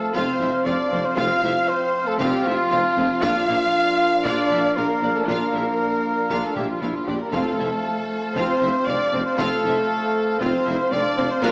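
This majestic, triumphant cinematic orchestral passage in F major at 117 BPM opens with punchy, dark trumpet stabs over sustained chords from clear trombones, sombre French horns and mellow woodwinds, as lush, bowed violins carry a second line and a softer melody above distant violas, very quiet cellos, a bowed chamber double bass section and a close-miked tuba on the bass, while hard-stick taiko enter in the background at 1.2 seconds and timpani sound briefly at 7.3 seconds as the harmony moves from F to Bb and back, set in a wet scoring-stage reverb with a small-speaker sound.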